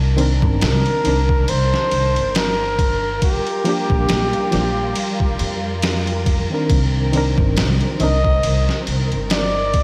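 Muted, con sordino strings with 12-bit sampler grit and a woody, tube-saturated pizzicato upright bass open this brooding, dark trip hop excerpt at 69 BPM in C minor, joined at 0.2 seconds by a reedy, tremolo-laden electric piano and an up-front, pitched-down sampler kit with a thumpy kick, overdrive and gated reverb, before a mellow bucket-muted jazz trumpet carries the melody through tape echo from 0.6 seconds over Cm9 and Gm7/Bb chords, all set in a lush hall reverb with a bright 1980s-style digital sheen.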